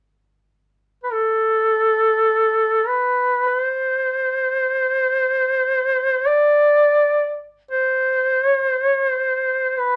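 In free time, this solemn, mournful Caucasian folk fragment, cut from a longer piece, features a warm duduk playing alone from 1.0 s to 10.0 s, moving between A4 and D5 in a tuning of A4 = 441 Hz. The duduk sits up front, its folk-style line shaded with vibrato and scooped notes, and a moderate studio reverb adds a short halo around it.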